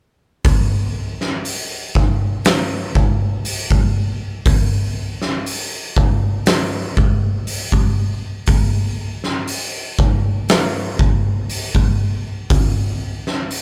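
A slow, straight 4/4 pulse at 60 BPM drives this sludgy, hypnotic metal passage, cut from a longer piece. An oversized, low-tuned acoustic drum kit carries the whole recording, entering at 0.4 seconds and playing through to 13.6 seconds across a single section. Its boomy kick and fat snare sit up front, joined by the hi-hat, while saturation gives the kit a gritty edge. The big, pumping room sound makes the drums feel heavy and enveloping, with only a light touch of reverb. The result has the raw presence of a band playing live together in one space.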